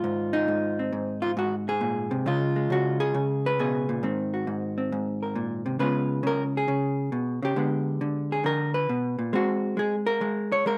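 Recorded outdoors with a light reverb, this short clip from a longer piece puts a single vintage hollow-body electric jazz guitar up front, its tone dark and clean, with a slapback echo trailing each picked note. The solo jazz playing has a playful, warm mood at 136 BPM in 4/4, with a swung eighth-note feel, tuned to A4 = 439 Hz and spanning Ab2 to Db5. Over 10.8 seconds the guitar moves through Abadd9, Db7, Ab9 and Bb13b9 before settling back on Ab9 at 9.3 seconds.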